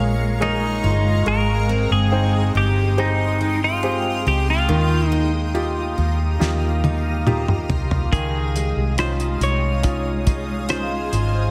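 A clean, twangy twelve-string electric guitar carries the melody from 0.4 seconds in this emotional, hopeful pop ballad excerpt, its compressed tone riding a straight 4/4 pulse. Beneath it, a brilliant, polished grand piano with short sustain plays the accompaniment, while a full-bodied jumbo steel-string acoustic guitar picks arpeggios. A dark, round, foam-muted vintage electric bass sits up front, and a shimmering, ethereal pad holds sustained chords with a slow attack, detuned unison voices, chorus, phaser and its own reverb. The harmony moves from Bbm7 through Abmaj7 and Ebadd9 to Dbadd9. A damped 70s drum kit with a fat snare, tight kick and rolled-off top enters at 6.4 seconds with a fill that runs to 8.1 seconds, using hi-hat, kick, rim click, snare and toms, and a moderate concert hall reverb gives the recording a big arena sound.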